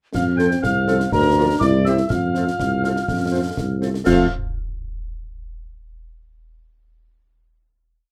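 A proud, rousing military-style march for wind band opens with a sombre-toned, distant trumpet section carrying the tune, doubled at the octave by a pure, vibrato-laden wooden piccolo, over an up-front mellow tuba holding the bass on the beats, a smooth-topped euphonium counter-melody in the background, and close, dry marching snare with dark cymbals and bass drum on the beat, while a roomy woodwind section and a tight horn section join at 0.4 seconds with after-beat and sustained chords before the brief piece lands on a final chord at 4.1 seconds.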